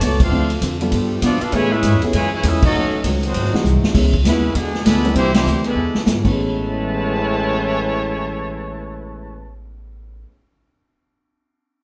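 A swinging 4/4 groove drives this joyful, energetic big band swing clip, with punchy kick, snare, hi-hat and ride cymbal up front from the swinging drum kit, a woody, thumpy upright bass, a warm baby grand piano sitting in the background and a dark, very quiet hollow-body guitar comping throughout. A clear, vintage-toned trumpet section carries the melody with vibrato over a tight trombone section's soft-attack second line, while a bright, smooth-topped saxophone section holds quiet sustained chords until 3.9 s. Band accents punctuate the lively ensemble, drum fills kick up around 3.6 s and 5.8 s, and the drums drop out at 6.3 s, all heard in the moderate reverb of a band playing live together in one room.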